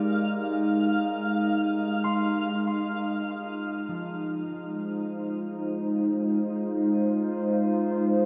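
Drenched in a long cathedral reverb with a dark, warm production, this short ambient excerpt floats weightless and peaceful in free time in Ab lydian, resting on an Ab6 chord. Up front, a warbly, tape-like pad holds sustained chords with a nostalgic, lo-fi, vintage character, its detuned sawtooth and triangle tones softened by chorus and shimmer reverb. Beneath it, a thumb-plucked concert harp ripples through ringing arpeggios in the background, carried by delay and shimmer, and it fades in from 2.6 seconds. A twinkling granular texture sparkles on a high F with an octave-up shimmer for the opening 2.6 seconds before dropping away. At 5.0 seconds a warm, evolving analog drone enters low in the mix, its detuned, ring-modulated pulse and sawtooth tones thickened with chorus and sustained with a long release.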